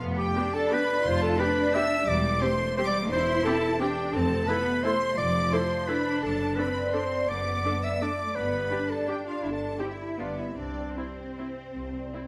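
In a rubato 3/4 that moves between 145 and 185 BPM, this elegant, sweeping classical passage in C major travels through a short progression that settles from G7 onto C at 10.6 seconds. An up-front, close-miked clarinet carries a clear second line beside a lush, rich violin section with vibrato, while a second violin section with a smooth top sings the melody from the background and a viola section adds focused accompaniment. Beneath them, distant, even cellos and bowed double basses hold the bass, a bright, ringing harp plays arpeggios in the background, and a moderate recital hall reverb surrounds the ensemble.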